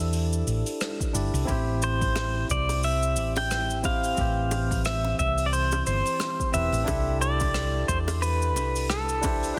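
A dense, heavily limited modern master with light reverb and small-room ambience frames this wistful, smooth sunset chillout excerpt at 89 BPM in 4/4, with a gentle 16th-note swing and tuning at A4 = 441 Hz. Up front, a clean, compressed pedal steel guitar carries the melody with fingerpicks, slide and volume swells through digital delay, beside a round, dark, amped hollow-body short-scale bass played with the fingers. A direct tine electric piano with its own delay moves from C69 to Am7 and back. A vintage brush kit with a rolled-off top adds cabasa, hi-hat and rim click, a punchy, layered electronic kick joins at 1.0 seconds, and tight, high-tuned bongos struck with hard hands sit in the background from 1.5 seconds.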